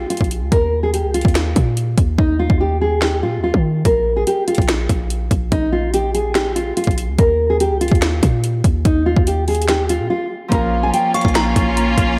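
Opening on a thumb-plucked nylon-string guitar melody with analog delay over a deep, boomy 808-style bass and a trap kit of hard-clipped kick, sharp snare, finger snaps and metallic hats (the hats muted from 2.2 to 3.9 seconds), this menacing, hard-hitting half-time trap cut at 144 BPM in Bb dorian drifts through a dreamy hall reverb, breaks briefly at 10.1 seconds, then at 10.5 seconds adds ringing fingerpicked Celtic harp and a clear symphonic string section holding intense sustained chords, joined at 11.1 seconds by a fleeting, tinkling FM tine bell with chorus and delay.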